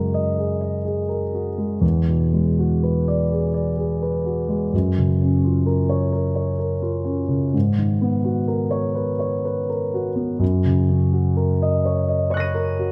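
Dreamy and serene, this impressionist classical solo piano passage, cut from a longer piece, drifts in a rubato 3/4 at about 63 BPM in F# major, tuned to A4 = 437 Hz, with a warm, up-front concert grand spanning E2 to D#7, its deep bass and open, long-sustaining tone moving through lush harmonies from F#6/9 to E9, F#maj7 and G#m11 before settling on F#6, captured by close, detailed microphones within a moderate concert hall reverb.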